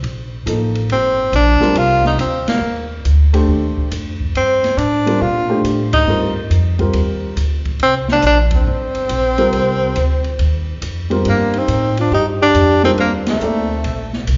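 Modal jazz in C dorian at 139 BPM with a swung feel, searching and intense, where a clear, up-front tenor saxophone carries the melody with vibrato and subtone over woody pizzicato upright bass, a dark drum kit with a rolled-off top of ride, hi-hat, snare and boomy kick, and an intimate baby grand piano with audible action noise, as a warm alto saxophone joins on a second line at 11.3 s, the band hits accents at 2.4, 5.9, 8.4 and 13.2 s, and a recital-hall reverb softens this fragment of a longer piece.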